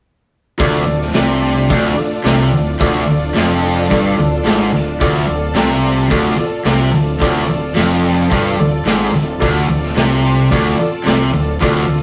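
A straight 4/4 classic rock groove from a big acoustic kit, with punchy kick, medium-tuned snare and hi-hat, drives this gritty, swaggering excerpt, with every part playing from 0.6 s to 12.0 s over a single minor chord. Up front, a dark overdriven electric guitar picks a low riff, a bright cranked stack guitar plays a riff in the background, and a growling fingered electric bass adds overdriven weight beneath. A worn, woody, slightly detuned upright piano supplies accompaniment while shimmering vintage string-machine violins hold soft sustained chords with ensemble chorus, all set in a rough rehearsal-room sound with saturation and a wet studio reverb.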